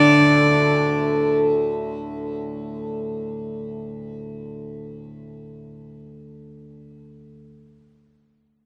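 Indian classical in a serene, meditative mood, opening with a nasal, reedy bowed violin melody with light vibrato and gut-string tone alongside a dark, floating sul tasto cello second line, both carrying slapback echo, until the violin stops at 1.3 s and the cello at 1.5 s, leaving the softly plucked, buzzing, shimmering tanpura drone, up front from the very start, to ring on until 7.4 s under light reverb in an outdoor setting.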